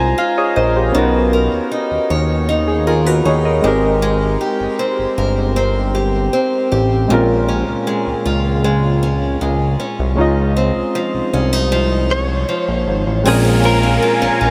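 Late-night and sensual, this contemporary R&B excerpt moves at an unhurried 78 BPM in 4/4 with a straight feel, centred in Bb dorian and drifting through lush major-ninth chords before settling on Bb minor. Soft electric-piano-like synth keys, round and mellow with a touch of chorus, carry the accompaniment and open with a brief fill, while a picked acoustic archtop guitar sits up front with boxy arpeggios and audible finger squeak, trailed by a diffuse ambient delay. Underneath, a fat analog bass gives a thick, nasal, saturated low end with a plucky filter edge. At 12.1 seconds a clean, direct-recorded electric guitar enters with a short, compressed melody, coloured by ensemble chorus and delay. At 13.3 seconds the harmony turns to Bb minor as a smooth, warbling vintage pad and an electronic downlifter join. The whole mix is dreamy and soaked in a huge ambient reverb.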